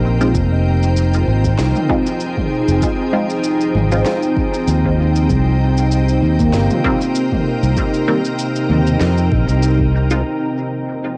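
A fingered electric bass sits up front in this ambient dub excerpt, its warm low line given a gentle tube-saturated edge beneath a spacious, deep mood at 97 BPM in F minor, with a light swing on the sixteenths. A soft, organ-like pad holds sustained chords that move from Fm7 to Cm7 and back, its pure, bright tone blooming slowly through ensemble chorus, built-in reverb and a touch of cassette tape. Very quietly, a handpan plays meditative, ringing arpeggios with an airy, mellow steel voice until about 9.4 seconds. In the background, muted dub chord stabs pluck through phaser, 12-bit sampler grit and dub echo, while an organic electronic kit of shaker, woody snare and toms trails its own dub echo over a deep, tape-warm electronic kick. The whole home cassette recording carries light digital ambience and a faint mains hum as the parts drop away by 11.2 seconds.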